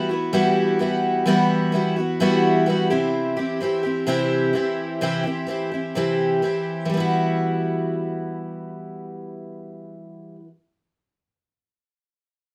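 This rock excerpt features a single picked twelve-string acoustic guitar playing alone from start to finish, with a reflective, dusty mood at a steady 128 BPM in straight 4/4. Set in E minor and tuned slightly sharp to A4 = 441 Hz, the guitar moves from an Emadd9 chord to C at 2.9 seconds, then returns to Emadd9 at 6.9 seconds as a second passage begins. Its fresh strings give a shimmering, octave-doubled sound with an auditorium character, ranging from C3 to G4. The guitar sits up front in a wet studio reverb, and the whole take has the feel of a rough home demo mix. The fragment is cut from a longer piece and stops at about 10.6 seconds.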